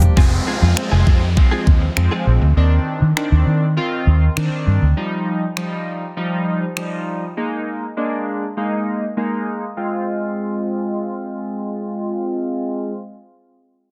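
A straight 4/4 pop drum kit at 100 BPM, with a knocking kick, crisp hats, finger snaps, toms and a softly clipped snare, opens on a fill beside a dark, round, foam-muted fingered bass that pumps with sidechain compression, driving this bittersweet yet confident dance-pop piece in F dorian. A glossy, retro chorused polysynth carries the chords from Fm through Cmadd9/Eb, Ebadd9 and Absus2 under a long filter sweep and a sidechain pump, while a clean, direct-recorded picked electric guitar riff plays only until 2.5 s and an electronic downlifter trails beneath. The bass drops out at 4.9 s and the drums at 6.9 s, leaving the synth alone in light digital reverb on a dense, heavily limited modern master.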